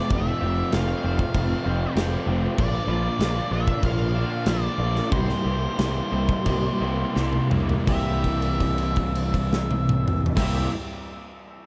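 A dark, fuzzy lead guitar sings a melody through distortion and analog delay from the start, alongside a hollow-body guitar riff with lush chorus, a raw overdriven garage guitar riff trailed by reverse reverb, and faint twangy arpeggios, in this wistful, dreamy shoegaze and dream pop piece in C mixolydian at 82-97 BPM. A growly, overdriven picked bass and a punchy rock kit with bright cymbals sit up front, moving through Fmaj9, Bbmaj7 and C7 as the tempo slows from 2.6 to 7.9 seconds, where a drum fill leads into a held note. Light reverb and studio ambience surround this excerpt cut from a longer piece.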